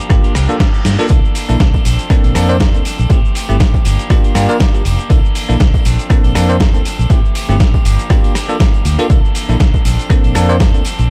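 A steady pulse at 120 BPM in 4/4, with a light 16th-note swing, drives this joyful, sunny slice of filtered disco house, cut from a longer piece. A punchy, tape-warm electronic kick sits up front, joined by a gritty, overdriven sampler-style kit of cabasa, hi-hat, rim click and a medium-tuned snare, whose hats and percussion pump with sidechain compression, while a very quiet, saturated tambourine slips in at 1.1 seconds. A fingered electric bass, foam-muted and warm, pumps along beneath a bell-like, bright tine electric piano that carries phaser and 12-bit sampler grit as it comps through a looping Gm7, C13, Bbmaj9 and Am7 progression. An electric guitar at the edge of break-up picks a slightly broken-up riff, also pumping. Early on, a reverse cymbal rises in the background from 0.3 to 1.1 seconds, and a drum fill lands at 0.9 seconds, all within a dry, dark production.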